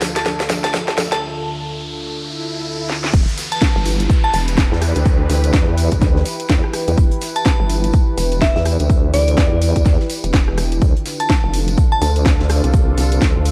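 Swaggering and bouncy, this bass house excerpt moves at 125 BPM in E phrygian with a swung sixteenth-note feel and a dark production. It opens with a build-up over a Dm chord: a sweeping, detuned sawtooth pad with chorus and sidechain pumping holds sustained chords, a boxy baby grand piano stabs briefly through tape echo until 1.1 seconds, and an electronic riser carries the tension while a glassy, crystalline FM bell with phaser and chorus picks out a melody. Overdriven house drums with a cracking snare and bright hats drive throughout, layered over a very quiet, dry funk kit with shaker, a distant jingly tambourine, and a faint warbling, lo-fi tape-like pad. At 3.1 seconds the drop lands on Em as a punchy, overdriven kick and a nasal, wobbling vowel-sweep bass with chorus and sidechain pumping come in up front. The bell returns for a second phrase, and the harmony shifts back to Dm at 10.8 seconds, all set in a light small-room ambience.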